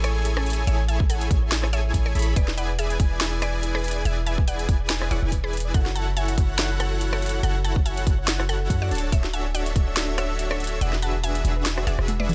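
A euphoric, bright future bass excerpt opens with a huge, thick supersaw riff carrying 12-bit sampler grit and sidechain pumping, a woody, round mallet-like pluck melody with chorus and dub echo, a faint airy, dreamy lead and a very quiet tine-like thumb-piano pluck weaving arpeggios, all over a deep, boomy 808 bass and a tape-warm trap kit with sharp snare, metallic hats, rim clicks and toms. A hard-clipped electronic kick joins up front at 1.0 s, driving the half-time, lightly swung groove through lush seventh and ninth chords. The kick drops out at 10.8 s before a drum fill at 12.1 s, all in a dry mix.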